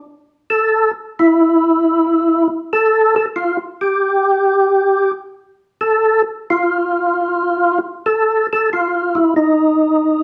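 A relaxed swing in 4/4 at 90 BPM carries this bluesy, greasy jazz passage in F major, its eighth notes lilting with a firm swing. A percussive tonewheel organ takes the solo, entering at 0.5 seconds and playing through to the cut at 10.2 seconds within a compact span from Eb4 to A4. The organ sits up front with a full, lightly overdriven tone, and its third harmonic percussion gives each note a clicky bite. Chorus vibrato and a slow rotary speaker lend the sound a gentle, shimmering churn. Captured live in one room with a wet studio reverb, this short excerpt lifted from a longer piece has a close, greasy club feel.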